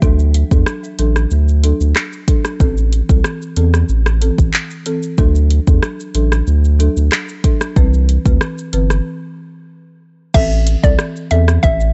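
A saturated sub bass sits up front in this short dancehall excerpt, its deep, thick sine tone driving a bouncy, hypnotic groove at 93 BPM in a straight 4/4. An electronic afro-pop drum kit plays alongside it, with a deep kick, metallic hi-hats, rim clicks, handclaps, shaker and crash cymbal carrying a tape-tinged, produced punch. Beneath them a folk marimba struck with medium mallets adds woody, rustic accompaniment from hardwood bars, sounding dry and boxy as if in a small room. The chords move from D to Am, back to D and on to Cmaj7, and a break at 9.1 seconds gives way to a new section at 10.3 seconds, where the harmony turns to Am. There a hollow square pluck enters with a short, dark melody, its decaying filtered notes carrying chorus and analog delay. The whole recording has a gritty, cassette-like hardware character with a dulled top end and a digital ambience.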